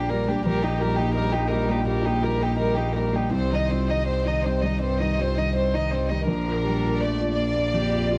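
Intimate and hopeful, this neoclassical passage for piano and strings moves at 82 BPM in 4/4, though its rubato feel lets the pulse breathe freely. A chamber violin section carries the melody up front, its bowed sul tasto tone soft in attack, touched with vibrato and set in a plate reverb. Beneath it, a felt-muted upright piano supplies mellow accompaniment with audible action noise. A single viola adds to the accompaniment with an airy bow and light vibrato, while a lone cello traces a pure, floating second line in the background. A bowed double bass sits up front at the bottom as the harmony moves from Eb/Bb at 0.5 seconds through Cm at 3.3 seconds to Bb at 6.3 seconds. The recording carries a worn, warbling cassette-tape character with pitch drift and a light reverb.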